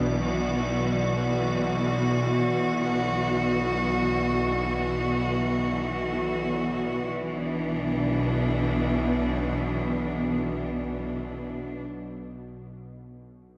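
Dark ambient drone in free time and B minor, tuned slightly flat, with a desolate mood: a smooth, bowed cello section holds sustained chords with vibrato up front while a tense, nasal drone with vibrato sits beneath on B, an icy, crystalline glass pad with chorus hovers in the background until 7.0 seconds, and a lush hall reverb soaks the whole fragment in a dreamy haze.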